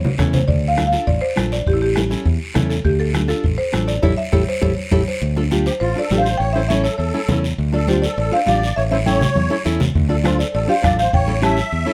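A buzzing marimba played with medium mallets carries the melody in this fiery, driving cumbia excerpt, its hardwood bars sounding woody and dark with a dry, buzzing edge. Beneath it, a fingered electric bass sits up front with a direct tone, while a full-bodied nylon-string guitar supplies fingerpicked accompaniment. The percussion pairs ringing, medium-tuned congas played with soft hands and a raspy, saturated guiro, while a soft-beater bombo thumps through the opening stretch, drops out, and returns near the close. The band hits an accent just before the second section begins at 5.2 seconds, and drum fills punctuate the phrases. From 5.7 seconds a close-miked musette accordion adds a shimmering, reedy second line over the minor-key harmony, and the mix sits in light reverb.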